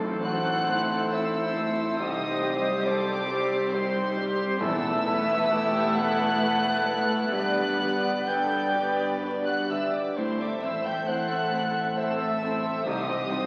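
A pure, floating violin section carries the high melody in this longing, sorrowful orchestral film-score excerpt in a rubato 3/4, shadowed by a mellow, hollow flute and a rich second violin line bowed sul tasto with soft attacks. Beneath them sit intimate dark violas with vibrato, a polished grand piano, very quiet French horn chords, ringing thumb-plucked harp arpeggios and background cello and double bass sections, while close, dry timpani played with hard mallets sound only in two brief passages, from 0.0 and from 4.6 seconds. A wet concert hall reverb and the crackle of a very old 78 rpm record lend the whole piece an aged patina.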